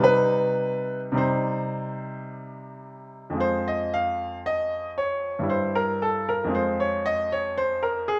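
In a slow triple metre at roughly 53-59 BPM, the playing moves with a flexible, rubato pulse that gives this baroque-style suite movement a solemn, grave character. A bright baby grand piano plays alone throughout, spanning F2 to F5, with a brilliant, open tone placed up front. The music opens in C minor and shifts to F minor at 3.4 s, where the opening phrase is restated. The harmony passes from Cm to Fm, touches a Gm69 chord at 5.5 s, and settles back on Fm at 6.5 s. Close, detailed microphones capture the instrument, tuned to A4 = 441 Hz, within a moderate recital hall reverb, in a short passage cut from a longer piece.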